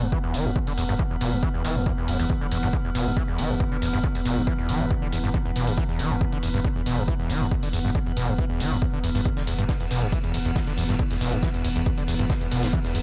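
A squelchy, screaming acid line with distortion, chorus and analog delay sits up front in this driving, industrial slice of peak-time techno, pumping against a punchy, layered kick drum and an overdriven analog hi-hat. Beneath it, a thick, saturated sub bass and an eerie, warbling FM drone with chorus and built-in reverb both pulse with sidechain pumping. At 9.3 seconds, a soft-mallet kit with dark ride cymbal and fat snare enters in a big room, all set in a dry, gritty hardware recording with light reverb.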